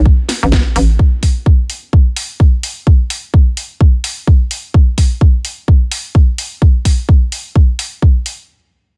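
Dry and up front, this gritty, bouncy bass house excerpt at 128 BPM with a 16th-note swing opens with a hollow, knocking FM bass, overdriven and pumping, that sounds only from 0.0 to 1.0 seconds, while a punchy electronic kick drum and a garage drum kit of cracking snare and bright hi-hats drive the groove through to its close.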